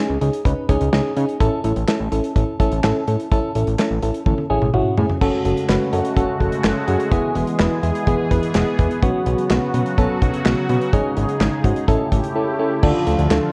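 A mellow, round FM electric piano with a chorus sheen opens this driving, nocturnal synth-pop excerpt at 126 BPM, joined at once by a fat sawtooth analog bass with a filter sweep and a dark studio drum kit of tight kick, snare, hi-hat, toms, handclaps and crash, whose fill at 4.3 s ushers in a bright, detuned, ring-modulated pad swelling in at 5.2 s over chords moving from C#sus2 and A to F#madd9, E, Bsus2, G#sus4 and A7, before a brief silent gap at 12.4 s lands on Dm, all coloured by light reverb and a worn, warbling cassette-tape pitch drift.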